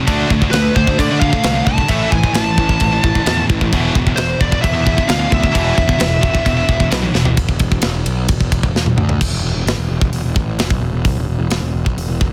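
A bright, double-tracked high-gain guitar riff opens this dark, relentless heavy metal piece, joined almost at once by a round, fuzzy, overdriven picked bass and a tight, up-front drum kit with a medium-tuned snare and a rolled-off top, while a distorted lead guitar melody rides high above; after a drum fill at 7.1 seconds the rhythm guitar drops out at 7.4 seconds, leaving bass and drums, with another fill at 8.8 seconds, to carry the dense, dry, heavily limited mix to its end.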